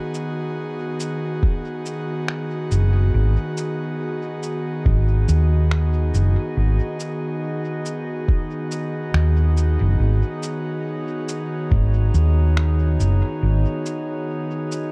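Ambient dub with a spacious, hazy mood, this short piece cut from a longer work rests on a single G# minor seventh chord held throughout. An airy, breathy pad opens the recording with soft sustained chords touched by chorus, while pitched-down, muffled electronic cabasa and finger snaps arrive almost at once, overdriven and trailed by dub echo. A compressed, thumpy kick drum with its own overdrive enters at 1.4 seconds and sits up front until 11.9 seconds. A round, dark hollow-body electric bass, fingered and amped, joins at 2.7 seconds as the most prominent part in the mix. From 4.2 seconds a calm, glassy texture of drifting overtones floats high and faint, softened by chorus and reverb. The production is dark and warm, set in a digital ambience.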